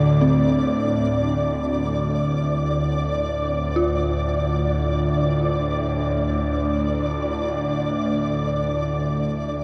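Dark ambient drone in free time, this desolate, unsettling passage is cut from a longer piece and rests on a D minor chord throughout its 9.6 seconds. Up front, a bowed-like drone in the low register carries a tense, string-like sawtooth body with a noise layer, detuned unison voices, vibrato and a bright edge, its slow attack and long release colored by a phaser and built-in reverb. Sitting high above it, a flickering grainy texture holds a single sustained pitch, its detuned triangle tone broken into granular particles. Entering at 0.2 seconds and kept in the background, a dark detuned synth bell plays mellow arpeggios in the middle register, its inharmonic, full-bodied FM tone struck with a fast attack and decaying through chorus and a diffuse ambient delay. The whole is steeped in a cathedral reverb with a 6.5-second tail, placing the sounds in a vast, echoing space.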